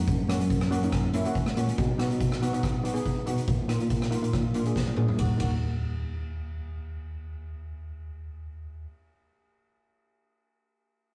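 A rough rehearsal-room recording with a dull top end and a modest small-room ambience carries this intense, driving calypso fragment, cut from a longer piece. Shimmering cello steel pans play the accompaniment while a worn, slightly out-of-tune tine electric piano, lightly overdriven through its built-in speakers, holds down the bass. A boomy, up-front acoustic street-band kit with a high-tuned snare drives the groove, joined briefly by very quiet, damped congas, and a drum fill at 4.8 seconds leads into the second section on an Eb minor chord before the kit drops out at 5.5 seconds.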